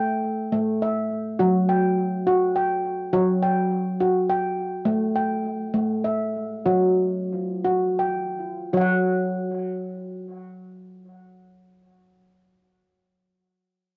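A lone handpan opens this hypnotic, meditative world excerpt, its ringing nitrided-steel tones struck with sharp finger strokes and sitting up front through a band-limited, vintage cassette-tape colour and analog delay. The tempo moves between 52 and 69 BPM in an unhurried 6/8, tuned to A4 = 438 Hz, and the playing slows from 4.9 seconds before a new passage takes over. The small booth ambience and home cassette recording give the solo an intimate, close feel until the handpan stops at 12.0 seconds.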